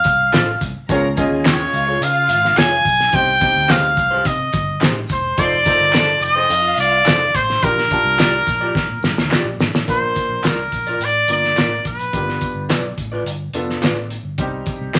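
A moderate club reverb gives this danceable, warm 1960s-style soul cut a club ambience, with a clear, punchy trumpet carrying the melody up front with light vibrato. Beneath it, a cloth-damped drum kit thuds with a fat snare, a tight kick and a muffled, gritty, rolled-off top, while a fingered electric bass adds a round, amped low end. Tambourine and group handclaps sit close but in the background, and an electric guitar through a small old amp plays dark, slightly broken-up stabs with tube saturation. A concert grand piano fills in the harmony with deep bass and audible action noise, and a dark, bowed studio violin section adds an expressive second line in the background from 0.9 to 7.3 seconds. A drum fill at 8.7 seconds leads into a new section, and the trumpet drops out shortly before the end of this excerpt.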